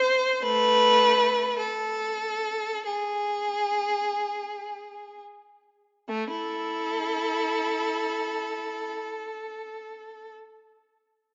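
The recording sits in a moderate concert-hall reverb with a 2.3-second decay, and its top end stops at 7.9 kHz, giving the sound a soft, rounded edge. This is a short classical passage cut from a longer piece for unaccompanied violin in A minor, with a lonely, meditative mood. It moves freely in 4/4 at a very slow pace of roughly 25 to 55 BPM, stretched by expressive rubato, and it slows down over its opening 6.1 seconds before moving into a contrasting second section. A single bowed violin plays alone from the start until 10.3 seconds, ranging from A3 up to C5. Placed up front, its tone is rich and focused, shaded with vibrato that suits the reflective atmosphere.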